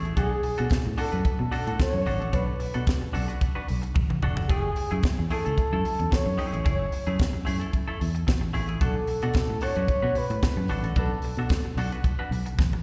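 Disco at 111 BPM with a driving, danceable feel: a tight funk kit with a high-tuned snare and a dry, up-front kick plays alongside a round, foam-muted fingered bass. Underneath, a bright, clean semi-hollow guitar with slapback echo accompanies a breathy, whispered flugelhorn melody, also with slapback echo, over Bm7 and F#m9. Drum fills land at 4.0 and 12.6 seconds, all heard as a live gig through a venue PA with recital hall reverb and a dulled top end.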